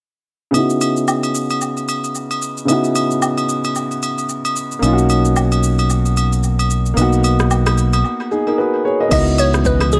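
Relaxed and warm, this amapiano excerpt opens with a dark, mellow grand piano, boxy and intimate with audible action noise and long sustain under a filter sweep, alongside an electronic drum kit with a deep, tape-warm kick, rim click, shaker and crash, plus close, dry agogo bells and woodblock with maracas and group handclaps. A fingered electric bass enters at 4.8 seconds, direct and up front, as the chords move from C#m11 through Bmaj9 and Bmaj13, and a break arrives at 8.0 seconds. A crystalline, nasal wavetable pluck with chorus and tape echo appears at 9.1 seconds, and a very quiet, blurred granular cloud pad drifts in at 9.8 seconds, all within an echo-heavy digital ambience.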